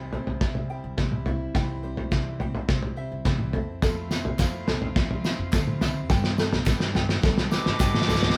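A straight, steady four-beat groove rides on a muffled, cloth-damped drum kit with a fat snare, tight kick and toms, sitting up front with a gritty, saturated edge and a rolled-off top, while a drum fill runs through this short cut from a longer piece. This is nostalgic indie folk with a building arrangement, moving from C through Fmaj7 to Gadd9. Underneath, a woody pizzicato upright bass, a full-bodied fingerpicked jumbo guitar, a bright picked dreadnought with fresh strings and finger squeak, and a light thumb-plucked ukulele playing arpeggios all sit in the background. At 3.8 seconds the fingerpicked guitar drops out as a very quiet, earthy chamber string section enters with bowed sustained chords, joined by a distant, jingly tambourine, and soon after by crisp, dry group handclaps. At 7.5 seconds an airy, hollow tin whistle steps in close with a chiffy, tongued, vibrato melody on a high note, while a nasal, metallic stopped French horn adds a low second line in the background. 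The band plays together in one room with light reverb, giving the whole a warm, live feel.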